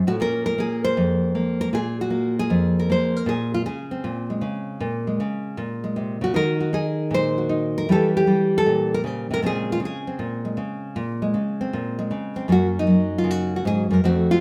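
Heard up front in a wet stone room, a full-bodied, fingerpicked nylon-string guitar plays cool, swinging solo jazz in Bb minor at 156 BPM, its deep classical tone moving through Bbm9, Ebm, Edim7 and back to Bbm9 before settling on Gb in this short cut from a longer piece.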